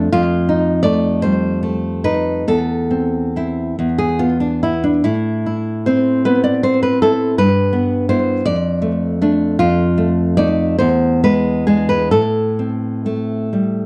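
Romantic solo classical guitar in 6/8 with free, rubato timing, wistful and melancholic in mood. A fingerpicked nylon-string guitar with fresh strings and a warm tone sits up front, its audible finger squeaks and a touch of slapback echo giving the close, dry studio sound an intimate, vintage character within a small room. The harmony drifts from F7 through Am, Em/G and Dm/F to E7 before settling on Am at 12.1 seconds, in a passage cut from a longer piece.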